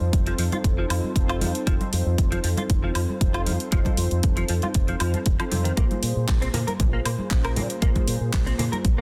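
A punchy, tape-warm electronic kick sits up front in this 117 BPM nu-disco excerpt, a sensual, cosmic groove in straight 4/4 that moves from F7 to Bbm7 at 5.8 s. A fingered electric bass with an envelope filter holds the low end, while a house kit of handclaps, hi-hat and woodblock, with soft clipping on the snare, sits alongside ringing congas played with soft hands in the background. Mellow, detuned sawtooth synth brass carries chorus, sidechain pumping and slapback echo, and a clean, scooped electric guitar riff entering at 0.3 s adds vintage 12-bit sampler grit, all set in digital ambience with a dense, heavily limited modern master.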